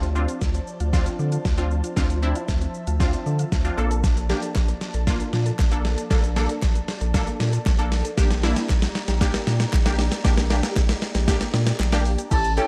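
This dance-pop excerpt at 116 BPM in a straight 4/4 feels driving and confident, moving through Dm7, Bbmaj7 and Gm/Bb as one long build-up with a drum fill running through it. An electronic deep house kit sits up front with a deep kick and snare beside hi-hat, shaker and crash. Under it, a thick, saturated sine sub bass holds sustained notes. A punchy, detuned sawtooth unison pluck carries the accompaniment, its filter sweep and phaser giving it a bright sheen while sidechain pumping makes it breathe with the kick. A soft, breathy pad with a noise layer and chorus holds the chords in the background, and a woody, round FM mallet-like pluck plays very quiet arpeggios. A crisp, close and dry group handclap joins at 4.6 seconds, and at 12.3 seconds a bright, close-miked concert flute with expressive vibrato steps to the front just as the excerpt ends, all in a rough home-demo mix with light digital reverb.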